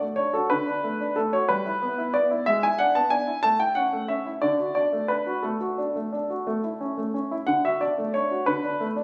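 A rubato 6/8 at 60 dotted-quarter beats per minute carries this playful, cheerful classical-period piano sonatina excerpt in D major, with a solo grand piano, warm and present with long sustain, sitting up front between D3 and A5 as it moves from D through Em/G, E7/G#, A, D, D/A and A before settling on D at 7.5 seconds, all captured by a phone in a recital hall whose moderate reverb is thickened by added club reverb and compression.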